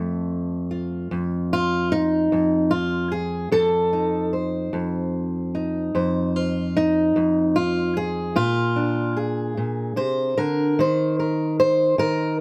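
A fingerpicked steel-string acoustic guitar carries this short fragment of acoustic country blues entirely on its own, playing from 0.0 to 12.4 seconds. Its tone is dark with an auditorium character, and it sits up front in the mix, spanning a range from F2 to C5. The mood is soulful and laid-back, moving in an unhurried 12/8 with a straight feel. The harmony rests on F7 before shifting to Bb7 at 8.4 seconds and settling on an Eb5 chord at 10.8 seconds. A light reverb gives the lone guitar a touch of space, and the clip ends mid-piece, as if lifted from a longer performance.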